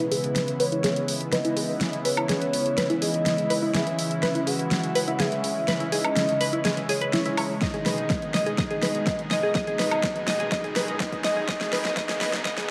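An up-front deep house drum kit with a fat, overdriven snare, hi-hat and woodblock drives this emotional progressive house build-up, playing a fill throughout while a punchy, overdriven electronic kick joins at 7.6 seconds as the harmony moves from C#m7 to G#m. A glassy wavetable pluck spins crystalline arpeggios under a filter sweep, with chorus, digital delay and sidechain pumping, and a lush, warbling unison pad holds sustained chords, also pumping. A soft, octave-layered lead sings a round, phased melody with vibrato, a barely audible analog bass sits beneath, and a very quiet riser enters at 10.1 seconds, all set in a dark production with a wet hall reverb.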